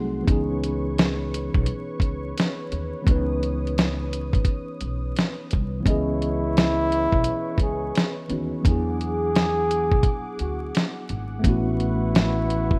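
A dark, breathy trumpet with a bucket mute carries the melody from 5.9 seconds, its veiled, scooped notes trailed by tape echo in this reflective, melancholic lo-fi hip hop piece with a swung 4/4 feel. Underneath, a mellow tine electric piano with cassette-tape coloring plays the accompaniment over a smooth, detuned analog pad with chorus, while a woody pizzicato upright bass and a gritty, compressed sampler-style drum kit with a thumpy kick, hi-hat and snare sit up front. The rough home-demo mix is dry and laced with vinyl crackle, moving from C#m7 through E9 to A69.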